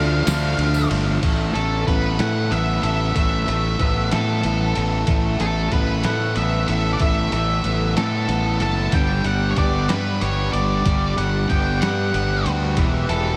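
Indie rock in a straight 6/8 feel, this carefree, upbeat excerpt floats in a dreamy mix soaked in a huge ambient reverb. An octave-fuzz lead guitar carries the melody with a dark, distorted tone, while a round, punchy fuzz bass sits up front beneath it. Two riffing guitars fill the background: a bright, overdriven electric with analog chorus and a hollow-bodied semi-hollow with subtle chorus. A lo-fi, sampler-style drum kit drives the groove with a thumpy kick, a muffled, pitched-down, tape-warm character, and crash and ride cymbals, and a jingly tambourine appears briefly near the start. A very quiet, shouting tonewheel organ with slow rotary swirl colours the opening second and returns at 8.9 s as the harmony moves from D minor through Asus2 to Gmaj7 and finally E minor.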